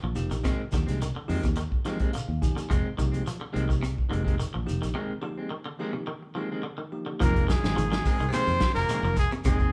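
Intense and hypnotic, this afrobeat excerpt at 106 BPM in F dorian sets twangy tremolo guitar arpeggios, slightly broken-up guitar stabs, a round foam-muted fingered bass, a bell-like tine electric piano in the background with a fill, a dark soul drum kit with a tight kick up front and a grainy shekere under moderate large-room reverb. After a break at 5.0 seconds, a breathy, whispered trumpet melody with scooped notes enters at 7.2 seconds over very quiet second lines from a brilliant trombone and a raspy, gritty baritone saxophone.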